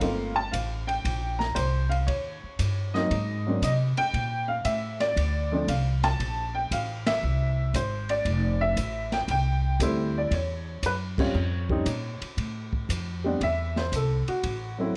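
Cool and moody, this short excerpt from a longer jazz piano trio piece swings at 116 BPM in 4/4, with a swung eighth-note feel and light reverb around the group. An upright piano carries the melody, its tone warm, woody and slightly detuned, sitting up front with a plate reverb, while a pizzicato upright bass on steel strings anchors the low end with a warm, woody tone and an up-front presence. An acoustic drum kit in a small room sits lower in the mix, dark and smooth with dark cymbals, a medium-tuned snare, a boomy kick and a rolled-off top, using crash, hi-hat, ride, snare and kick. The harmony moves through colours such as Gm11, Bbmaj7, Caug and Fmaj9, with the band hitting accents at 7.0 and 11.1 seconds. At 12.4 seconds the piano steps out for a brief solo over Am and a rootless D7 as the passage shifts into a new section before it is cut off.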